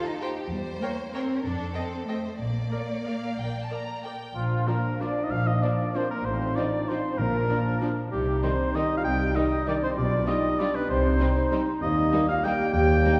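Heard from further back in a concert hall, the recording carries a wet reverb that lends this classical passage in triple time a festive, elegant air, and the pulse moves with a rubato feel. Bowed strings open the music: one violin section carries the melody with vibrato and a smooth top, a clearer, more focused violin section adds a second line, and a very quiet, lush viola section fills in the accompaniment. Beneath them, an expressive cello section with soft attacks and portamento joins a rich double bass section that sits up front and anchors the low end. At 4.4 s the winds and brass enter: a present cor anglais and an airy, distant silver flute add second lines, a roomy clarinet adds another, a mellow bassoon supports the accompaniment, and a horn section holds mellow sustained chords. A single round stroke of soft-mallet timpani sounds very quietly at 7.2 s, as the harmony lands on its home chord of Bb before moving through minor and dominant-seventh chords toward Eb.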